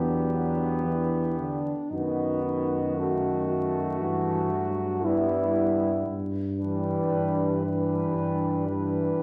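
A slow, hymn-like brass band passage at 58 BPM in 4/4 opens with the full ensemble together: a solo cornet with a dark, smooth-topped tone carries the lyrical melody, while a distant, roomy French horn section sings a second line in the background. A solo trombone with a soft attack and a tight, vintage-sounding trombone section fill in the accompaniment, and an up-front tuba with light vibrato anchors the bass through a rubato progression from Em7 through D#dim/F# to Em/G and Em7/G. The whole brief, warm excerpt sits in a reverberant stone room beneath a layer of vinyl crackle.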